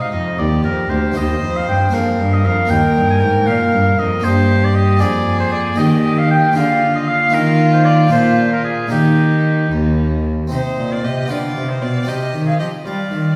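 A grave, solemn baroque-style sonata movement with continuo, moving in a steady 6/8 at 77 BPM in dotted quarters and settling into Eb major from 4.2 s before turning back toward C minor near its close. A clear, focused violin with vibrato carries the melody from a distance, while a roomy oboe sits up front on the second line and a rich, smooth-topped bowed cello anchors the bass. A dry, full-bodied French-style harpsichord supplies plucked accompaniment, all set in a wet recital hall heard from further back, in a fragment cut from a longer work.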